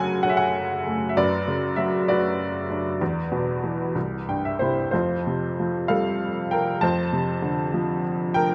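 A bright upright piano carries this short classical excerpt alone, its worn, woody tone sitting up front with audible action noise and a slightly detuned shimmer that makes it feel intimate. The solo is lyrical and peaceful, moving in a rubato 6/8 at about 65 BPM counted in dotted quarters, spanning from C2 to A5 and tuned to A4 = 442 Hz. It opens on F#m and passes through Bmadd9/F# and E5 before a brief piano fill over C at 4.0 s. At 4.9 s the music settles into F major on Fadd9, then moves to Dm7/F, giving the close a gentle, warm glow. The piano's long sustain blooms into a moderate concert hall reverb, lending the intimate instrument a sense of space.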